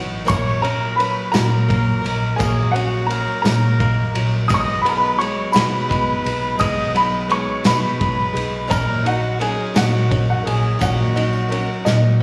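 A worn, woody, slightly detuned upright piano carries the melody from 0.3 seconds, shadowed by a classical-style trumpet on a second line, both touched with slapback echo and the trumpet also with tape echo, in this hopeful, warm indie folk excerpt at 57 BPM in a straight 6/8. Beneath them a round, dark hollow-body electric bass anchors the harmony moving from F#/A# through G#m7/B to D#m7/A#. Behind them sit a clear concert grand with audible action noise, a shimmering, octave-doubled twelve-string guitar, a plunky fingerpicked banjo playing arpeggios, a loose small-room drum kit with a punchy kick and dark cymbals, and a jingly tambourine, all heard as if through a live venue's PA with recital-hall reverb, until a drum fill closes the cut at 11.9 seconds.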